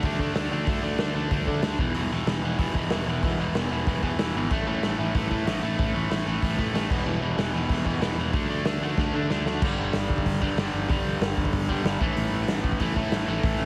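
A straight, driving punk rock beat pushes this urgent, raw excerpt, with a gritty garage drum kit (punchy kick, medium-tuned snare, saturated tone, a dark rolled-off top) under a double-tracked, distorted guitar riff that sits up front, and a picked, growly electric bass. The riff moves through D5, E5 and A5 power chords, then a drum fill at 9.0 seconds leads into a new section at 9.6 seconds built on G5 and A5. The dry mix is heavily compressed for a squashed, radio-style punch.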